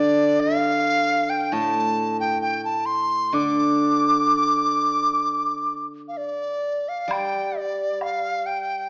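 A buzzing, pure bamboo dizi with vibrato and a crisp attack carries the graceful, wistful melody up front in this Chinese traditional chamber passage in D yu mode, taken from a longer piece and moving freely around 66 BPM over a ringing, silvery steel-string zither played with fingerpicks, while a dark, close and dry woodblock enters in the background from 7.1 to 8.2 seconds, the ensemble heard in a moderate recital hall reverb with a small speaker sound.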